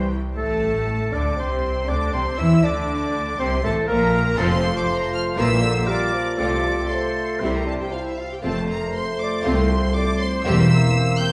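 A straight 4/4 pulse at 119 BPM drives this cheerful, spirited classical-period orchestral movement in F major, cut from a longer piece, where a clear, smooth violin section carries the melody high above, with vibrato. A soft-attacked oboe, an airy little flute group, a very quiet clarinet and a second, hushed violin section weave supporting lines, while a mellow bassoon and a lush, focused viola section fill the accompaniment and dark, distant French horns hold sustained chords over an up-front double bass section and a rich cello section in the background. The harmony moves from Amadd11 through Bb, F and C to a closing C7/E at 10.5 seconds, all set in a wet stone-room reverb that places the listener further back in the room.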